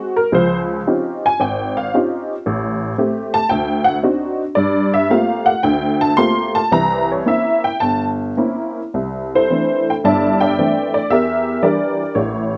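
A swinging, rubato 4/4 feel carries this playful solo jazz excerpt, where a lone honky-tonk upright piano, detuned and jangly with a woody, vintage character sitting up front in light reverb as if played live in one room, spans a broad register through rich chords like Dbmaj9#11 and D7b9 before settling onto a C69 at 8.9 seconds.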